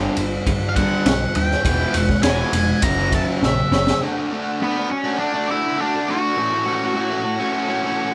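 A straight 4/4 pulse at 102 BPM drives this brooding, cathartic slice of quiet-loud alternative rock, cut from a longer piece and played live in one room with moderate reverb. Two bright, compressed fuzz guitars open on riffs, one sitting up front, while a growly, punchy overdriven picked bass and a raw garage kit with a boomy kick, high-tuned snare, dark cymbals and a pumping small-room sound push underneath. A dark octave-fuzz lead guitar stands forward with a solo, and a drum fill at 3.4 seconds leads into a new section at 4.0 seconds, where the bass, kit and second riff guitar drop out. A very quiet, silky string machine then enters with sustained chords, its vintage, warbling ensemble-chorus tone floating behind the remaining fuzz riff and lead. The harmony moves through G5, E and F#, then settles on D before closing on A6.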